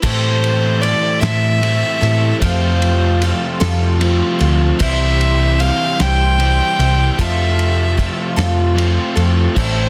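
Reflective and wistful, this short slice of folk rock and heartland rock moves at a slow 50 BPM in a straight 6/8, cycling through Am7, Fadd9, C and Fadd9. A dark, woody fiddle carries the melody up front, bowed by one player with light vibrato and a smooth top. Beneath it, a bright, boxy parlour twelve-string acoustic guitar is picked with fresh strings, its octave-doubled shimmer thickened by analog chorus. A dark, overdriven electric guitar plays a double-tracked riff, while a round, punchy hollow-body short-scale bass sits prominently in front. Far back, a clean tonewheel organ holds very quiet sustained chords through a slow rotary speaker with key click, and a dry, rolled-off, cloth-damped, thuddy drum kit with a fat snare, tight kick and dark cymbals plays until 9.7 seconds. Studio reverb surrounds the band, and the master is dense and heavily limited.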